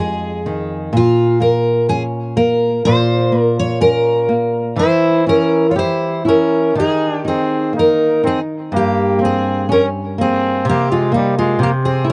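Recorded outdoors, this short fragment of a longer piece sounds dry and open, with little reverb and all three instruments placed up front. It is a mournful, passionate fado-style ballad in 2/4, its uneven beats pulled by rubato. A fingerpicked twelve-string acoustic guitar carries the melody throughout, its shimmering, octave-doubled tone full-bodied against a dark, fingerpicked flamenco guitar that supplies the accompaniment with a touch of slapback echo. At 4.8 seconds a growling trumpet enters with a jazz-style second line, breathy and raspy with a light vibrato and a smooth top. The harmony moves from Fm7 and Bbm through Edim7, Eb5 and Gdim to an Abmaj13/C, settling on C as the fragment closes at 12.1 seconds.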